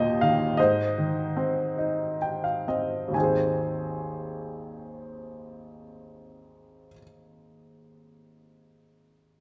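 Calm and tender, this short classical fragment cut from a longer piece features a clear, woody upright piano alone in Ab major, playing a lyrical rubato line in a slow 6/8 at 40-55 BPM that slows through its opening before a fill at 1.8-3.1 s leads into a new section, the instrument sitting intimate and up front with its action noise audible against the wet reverb of a recital hall.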